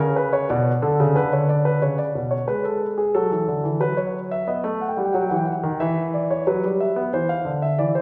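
Elegant and stately, this baroque-style two-part invention for solo grand piano moves at 91 BPM in a straight 4/4. The warm piano ranges from B2 to G5 and sits up front, yet is heard from further back in a wet recital hall with a 1.8-second reverb tail, as the harmony passes through Bm, F#m, B7, Em and C before the excerpt is cut from the longer piece at 8.0 seconds.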